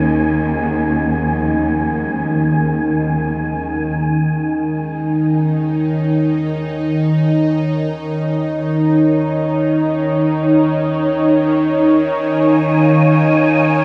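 Drenched in a huge ambient reverb and recorded to cassette tape, this serene, melancholic ambient fragment in free time and Eb minor rests on a mellow analog pad with chorus held up front throughout, while very quiet, muted felt-like synth keys play arpeggios until 6.2 s, a lush cello section holds the bass under the opening, a breathy, wind-like tuned noise texture drifts through the start and returns at 12.3 s, and from 4.7 s a bright, tense bowed-like drone with phaser enters in the foreground.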